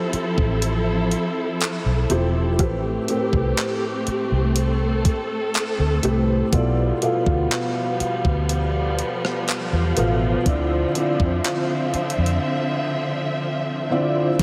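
A felt-muted upright piano and a studio string section open this slow, sensual and moody contemporary R&B excerpt together at 0.0 s, set at 61 BPM in a straight 4/4. The piano is mellow and intimate, given a vintage sheen by analog chorus, while the bowed ensemble sits up front with lush sustained chords, expressive vibrato and portamento. A round, dark, foam-muted fingered electric bass and a clean 12-bit sampler-style drum machine join almost at once, the bass amped and forward, the drums bringing a thumpy kick with handclaps, hi-hat and rim click. The harmony moves through Fmaj7, Am9, G13/B and Dm9, all bathed in a dreamy hall reverb. An electronic impact lands up front at 14.4 s, where this fragment of a longer piece is cut off.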